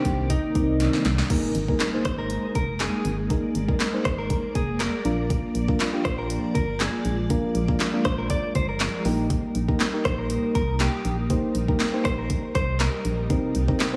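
A straight 4/4 groove from a deep house drum kit drives this confident, driving dance-pop passage, with its deep kick and punchy snare up front alongside hi-hat, handclaps and crash cymbal. A drum fill at 0.8 seconds leads into the main section at 1.3 seconds, where a very quiet electronic impact lands. Beneath, a dark, hollow FM bass with a percussive, organ-like attack pumps under sidechain, as do the round, warbling electric-piano-like synth keys with their chorus and slapback echo. An ensemble organ-string holds soft-attack chords throughout, its mellow, vintage pulse-wave tone thickened by ensemble chorus and also pumping. On top, a clean, picked electric guitar recorded direct carries the compressed melody, trailed by tape and slapback echo, as the chords move from Cm9 to Absus2, Bb and Eb/Bb within a lush hall reverb that lends a big arena sound.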